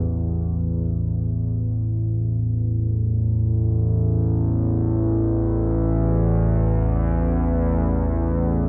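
Worn, warbling cassette tape gives this recording an aged surface, its pitch drifting unsteadily inside a huge, wet ambient reverb with a 9.3-second decay. The piece is a desolate, cavernous ambient fragment in free time, tuned to A4 = 444 Hz and cut from a longer work. A single analog drone plays solo from 0.0 to 8.7 s, sitting low between A1 and E2 on an A5 chord. Its sawtooth and pulse-wave tones, shaped by pulse-width modulation and a chorus effect, sound warm, mellow and vintage as they evolve. With a slow attack, long sustain and lingering release, the drone sits up front while the vast reverb stretches it into an empty space.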